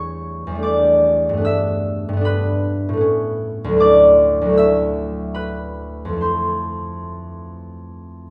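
Wistful and mysterious, this brief classical excerpt for solo concert harp drifts in a rubato 3/4 at roughly 65-80 BPM, cut from a longer piece. The fingerpicked harp sounds warm, ringing and up front, spanning D2 to E6 as it moves through Em7, G69, Aadd9 and Dadd9 before settling onto Fmaj7 at 6.2 seconds. A wet recital hall reverb with a 1.5-second decay surrounds the instrument.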